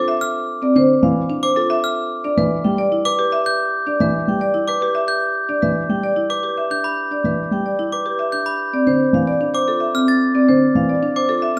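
The recording sits in a large studio with a wet reverb and is heard from further back in the room, though several parts still sound up front. It is propulsive, hypnotic minimalist classical pattern music in 3/4 with a straight feel, cut from a longer work. A marimba played with hard mallets carries the melody with a percussive, boxy tone, while a second marimba with soft mallets spins woody, round arpeggios beneath it. A glockenspiel struck with brass mallets joins at 0.2 seconds with bell-like, sparkling arpeggios high above. A dark concert grand piano enters at 0.8 seconds with a mellow accompaniment of deep bass and short sustain, then drops out at 10.9 seconds. The harmony moves from F5 to Em and settles on Fmaj7 with its third omitted near the close.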